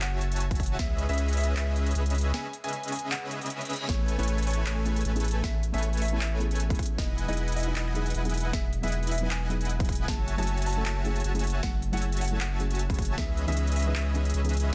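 A huge, detuned supersaw riff, a thick saturated sub bass, crisp trap hats, handclaps and a sharp snare open this euphoric, bright future bass excerpt at 155 BPM in a swung half-time feel, with a vintage-toned grand piano melody sitting in the background under dub echo and sidechain pumping. After a break from 2.3 s, a reverse cymbal leads into 3.9 s, where the punchy, overdriven electronic kick settles in and a soft, round pluck with chorus and digital delay adds accompaniment over chords moving from Amaj7 to Emaj7 and F#m7. The dense, heavily limited mix is dry, with the sub bass up front and the supersaw carrying a cassette-tape grit.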